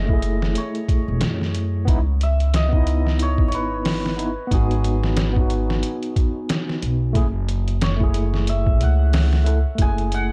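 Melancholic and smoky, this trip hop excerpt moves at 91 BPM with a swung 16th-note feel in F# dorian, where a shimmering hammered dulcimer melody with tape echo rings over a barky, overdriven tine electric piano carrying fast and harmonic tremolo, sampler grit and tape echo, while a woody pizzicato upright bass on gut strings and a muffled, pitched-down sampler-style drum kit with a thumpy kick and studio reverb sit up front in a dark production through chords of F#m7, C#m7 and G#m7.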